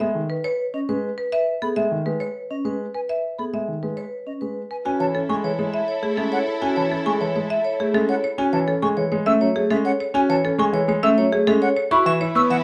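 Minimalist classical pattern music, propulsive and hypnotic, moving at 102 BPM in a straight 3/4 and cut from a longer piece. A marimba played with hard mallets carries the melody, its bright, woody tone percussive and airy, while a polished grand piano sits up front with long sustain as accompaniment. A vibraphone with medium hard mallets spins ringing, metallic arpeggios coloured by a fast motor vibrato, and a close-miked wooden flute joins at 0.7 s with soft-attack arpeggios in a straight tone. The harmony opens on a rootless Amaj7sus2 in A lydian, then shifts at 4.9 s to F#m7 as a lush, bowed string section enters with smooth, sustained chords, dropping out at 8.2 s and returning at 11.9 s under an Esus2. The whole is set in a moderate large studio reverb with a dark, warm production.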